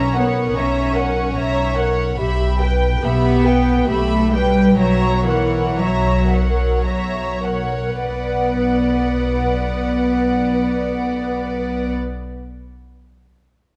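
A dark, softly reverberant string recording, heard on a scoring stage with a moderate 1.7-second decay, presents this short cut from a longer classical piece in B minor. The mood is melancholic and solemn, moving in a rubato 3/4 at roughly 47-75 BPM, with the tempo slowing from 1.0 to 8.0 seconds before the harmony settles on B minor at 8.0 seconds. A close violin section carries the melody in the upper register with a pure, floating tone, while a more distant second violin section adds a rich line beneath it. Violas with vibrato give a woody, lush accompaniment, the cellos sit fullest in the balance, and the double basses hold a low B up front. Every section bows sul tasto, and all five play together for the full 11.9 seconds over a progression that moves between F#7 and E minor above a sustained B.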